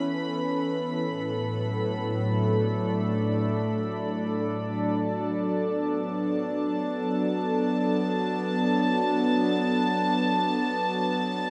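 A warbling, nostalgic tape-like pad of detuned sawtooth and triangle tones with ring modulation opens this luminous, free-time ambient excerpt up front, holding slow-attack chords from Aadd9 through D/A to D6 under chorus and a huge, wet reverb, while a very quiet, dry, metallic vibraphone rings a brief arpeggio on C#5 until 1.1 seconds and a dark, floating, bowed studio violin section adds a high texture that fades over the first 5.1 seconds.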